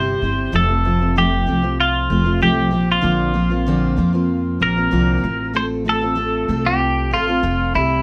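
A light reverb sets this short acoustic pop clip in a modest space, with both guitars placed up front. At 96 BPM in a straight 4/4 and F major, the mood is carefree and heartfelt. A bright, twangy twelve-string electric guitar carries the melody between E4 and C5, its clean, compressed tone ringing with the sparkle of doubled strings. Beneath it, a full-bodied jumbo steel-string acoustic guitar supplies picked accompaniment from F2 up to A4, with audible finger squeak adding a human touch. An upright bass with gut strings plays pizzicato in the low register, lending a woody, thumpy foundation. All three parts play throughout the 8 seconds, as the harmony moves from C to F, then to Bbadd9 at 2.7 seconds and F/A at 5.2 seconds.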